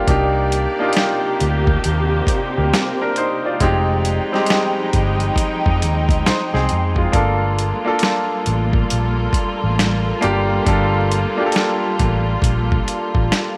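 R&B and neo-soul with a sultry, smooth mood and a swung sixteenth-note lilt, this short excerpt moves through Cm9, Fm9 and Gm9 chords under light reverb and a layer of vinyl crackle. A brilliant, long-sustaining baby grand piano plays accompaniment up front while a close, intimate string section holds bowed chords with vibrato and a smooth sul tasto top. Underneath, a dark, round, foam-muted electric bass with transformer saturation sits beside a gritty, pitched-down boom bap sampler kit with a thumpy kick, medium-tuned snare and hi-hat.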